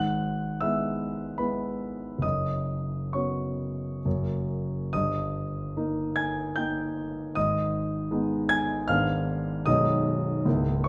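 Classical romantic character piece for solo piano, lyrical and warm, unfolding in a rubato 3/4 at 64-80 BPM and tuned to A4 = 438 Hz, with a warm, up-front concert grand whose deep bass anchors harmonies drifting from E/G# through F#sus4, D#/G and G#m to a closing G#m/B, set in a wet recital hall reverb across this brief 10.9-second passage from a longer work.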